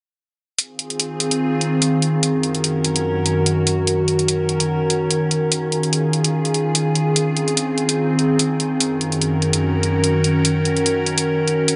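An evolving, detuned wavetable pad with chorus and its own reverb sits up front from 0.9 s, its bright, morphing triangle tone sustaining long chords in F phrygian that move from Fm7 through Ebm7/Gb, Gb6 and Dbadd9. Alongside it, entering slightly earlier at 0.6 s, an overdriven, layered electronic hi-hat, re-recorded in a small room and also placed up front, drives a heavy wobble dubstep groove at 146 BPM, felt in half-time with a light swing on the sixteenths. The mood is aggressive and menacing, set in a moderate digital room ambience with a dark top end, in this passage cut from a longer piece.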